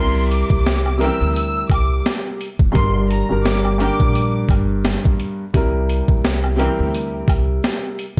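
Boom-bap hip-hop at 86 BPM with a swung 16th feel, tough and reflective, moving between C7 and Gm in a dark, vinyl-crackled small-room production. A mellow, up-front baby grand piano and a woody pizzicato upright bass carry the harmony and low end, while a gritty, compressed sampler-style drum kit with a thumpy kick and high-tuned snare sits up front from 0.3 s, backed by a faint egg shaker and woodblock. A lush, bowed violin section with vibrato carries the high melody through filters and delay until 4.3 s, and expressive string stabs, also filtered and delayed, enter in the background at 1.0 s.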